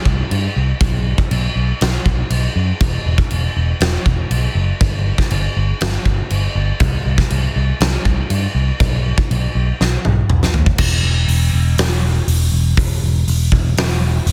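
Hard rock with a driving, heavy mood, this excerpt moves at 120 BPM in a straight 4/4 and is slightly below standard pitch at A4 = 438 Hz. A picked electric bass and a huge arena drum kit play together from 0.1 seconds to the end at 14.3 seconds, the bass sitting low between E1 and G2 with a bright, growly, amped tone and a punchy attack. The acoustic kit has a big-room, natural character, with a fat snare, a punchy kick, toms and bright crash and hi-hat cymbals placed up front. A drum fill from 9.8 to 10.8 seconds leads into a new section that runs through to the close. The sound is dry with little reverb, and the master is dense and heavily limited in a modern style.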